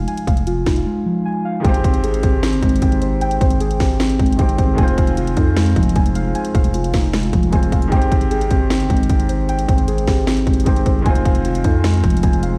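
A trap kit with a hard-clipped kick, a sharp snare and bright hats drives this menacing, eerie half-time hip hop excerpt at 153 BPM, over a growling, buzzy 808-style bass and dark, felt-like synth key arpeggios treated with chorus and analog delay, while a boxy concert grand piano with long sustain joins at 1.6 s to accompany the Fm7 and Abmaj7 changes, the whole mix heard as if through a big sound system in a bare stone room with vinyl crackle.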